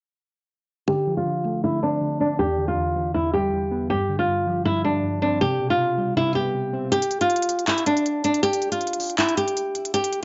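A fingerpicked flamenco guitar sits up front with a wistful, triumphant melody from 0.9 to 10.2 seconds in this half-time trap excerpt at 159 BPM in C major, first over warbling, detuned lo-fi synth keys with chorus and a filter sweep moving through Dm7, Em7, G7sus4 and C5, then over handclaps and crisp hi-hats from 6.9 seconds with the kick muted, all captured dry and gritty with a dark, dulled top end.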